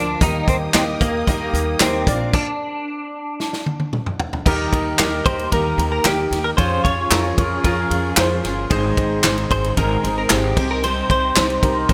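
Hopeful and warm, this piano-driven pop excerpt moves at a straight 4/4 with a bright 1980s-style digital sheen and light studio reverb, as a clean, direct-recorded electric guitar carries the melody up front through an ensemble chorus over a clear, polished concert grand piano bathed in lush chorus. A picked dreadnought acoustic guitar plays a full-bodied riff in the background, a woody, thumpy pizzicato upright bass holds the low end, and a dark, distant bowed string section sustains very quiet chords with vibrato. A natural country drum kit with punchy kick, handclaps and cymbals enters at 0.2 seconds, and after a stop at 2.3 seconds a drum fill leads into the next section at 4.5 seconds.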